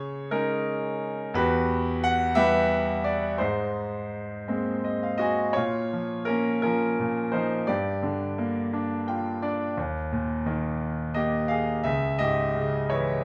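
Classical solo piano in a wistful, dark mood, this 6/8 passage cut from a longer piece unfolds with free rubato on a bright concert grand whose brilliant, up-front tone, deep bass and long sustain ring through a moderate recital hall reverb, with short piano fills at 4.5 s and 8.7 s and a shift to a new section at 5.6 s.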